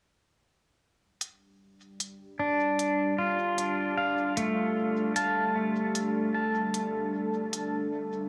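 An electronic hi-hat ticks crisply from 1.2 seconds at a swung 76 BPM in 4/4, setting a slow ambient dub pulse under this deep, meditative fragment cut from a longer piece. A dark sawtooth pad with a sub octave fades in and holds sustained, detuned chords through chorus, moving from G5 toward Dm by 7.1 seconds. Up front, a clean electric pedal steel guitar plays fingerpicked arpeggios through a low-pass filter sweep and tape echo, all set in a huge wet reverb.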